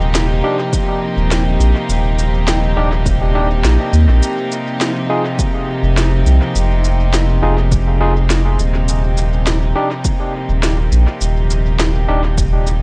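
A round, dark analog bass with tube saturation sits up front in this deep, hazy ambient dub piece at 103 BPM, moving from Eb to F7(no3) and back to Eb across the 12.8-second fragment. A floating, bowed studio string section holds soft-attack chords beneath gritty, barky stabs from an overdriven tine electric piano played through a combo amp and treated with dub echo, entering at 0.4 seconds. A punchy, layered electronic kick and a woody electronic snare with shaker, the snare and shaker also bathed in dub echo, carry the straight 4/4 pulse in a light reverb.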